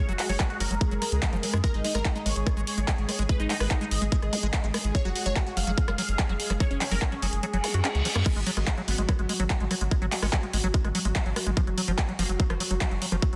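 Hypnotic and driving, this psychedelic trance excerpt runs at 145 BPM in a straight 4/4, with chords moving between F#5 and G#5 before reaching G#7(no3) at 8.3 seconds. An overdriven electronic kick sits up front alongside a drum kit of crash, handclaps, bright hi-hats and rim clicks, both set in a small room, while a round, deep analog bass holds the low end. A squelchy, resonant acid bass riff with filter sweeps and tape echo pumps against the kick, and a pulsing, mellow gated texture sustains chords alongside it. A punchy detuned supersaw stab carries the melody through phaser and dub echo until 8.2 seconds, and the kick drops out from 7.4 to 8.3 seconds under a reverse cymbal. After that break a very quiet, metallic wobble bass adds a second line, all within a dense, heavily limited modern master with light digital ambience.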